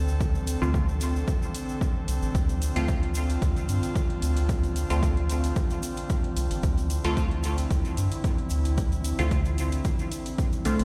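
Meditative and nocturnal, this dub techno excerpt moves at 112 BPM in 4/4 with a light 16th-note swing, resting on a single Dm7 chord in D minor throughout its 10.8 seconds. A round, dark analog bass and an airy, breathy pad with chorus both pulse with sidechain pumping alongside the punchy, overdriven electronic kick, while a muted, detuned dub chord stab enters at 0.6 seconds with a filter sweep, phaser and dub echo. A grainy egg shaker plays along with metallic, tape-tinged hi-hats that sit in the background, and the whole mix sounds as if played on a big sound system in a bare stone room.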